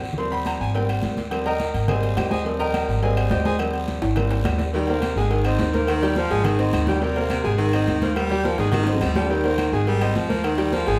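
A bright, brilliant concert grand piano leads this joyful, danceable salsa excerpt at 210 BPM in Eb major, taking a solo turn for the first 4.7 seconds as it rocks between Eb6 and Abmaj7 with a natural, deep-bassed tone set up front. Beneath it, an up-front pizzicato upright bass on steel strings gives a woody, thumpy foundation. The percussion is busy and layered: soft-handed, high-tuned congas with a damped, thick-skinned sound sit in the background, while round, low-tuned cowbell and bongos carry a vintage, band-limited character. Close, dry agogo bells and timbales add a ringing metal-shell edge, distant claves click with a hollow-wood quality in a large room, and a raspy guiro scrapes along in a live space, with drum fills marking the turns around 4.0 and 8.7 seconds. At 4.7 seconds a close-miked baritone saxophone enters as a pop-style second line, its vibrato and scooped notes cutting through with a gleaming tone. 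The whole mix is heard from further back in a large studio with a wet, lingering reverb.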